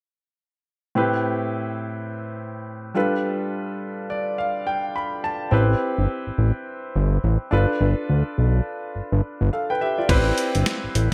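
New jack swing R&B excerpt in A minor at 105 BPM with a slick, bouncy feel and swung sixteenths, opening on an intimate concert grand piano with audible action noise and long sustain that comps over Am7 and G7 and slips in a fill between 3.8 and 5.5 seconds. A fat, nasal analog bass with a detuned sawtooth edge and saturated bite joins at 5.5 seconds. At 10.1 seconds a gritty, pitched-down sampler-style drum kit arrives with a thumpy kick, high-tuned snare, hi-hat and crash, all inside a bright 1980s-style digital production with plate reverb.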